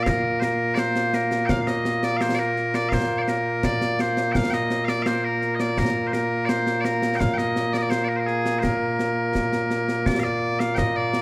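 Scottish pipe music in Bb major at 84 BPM in a straight 2/4, this stirring, ceremonial excerpt puts loud, piercing bagpipes up front carrying a continuous solo melody from the start, joined at 0.1 seconds by concert snare and bass drums with bright cymbals and a small-room acoustic character, all set in a moderate concert hall reverb before a new section begins at 10.1 seconds.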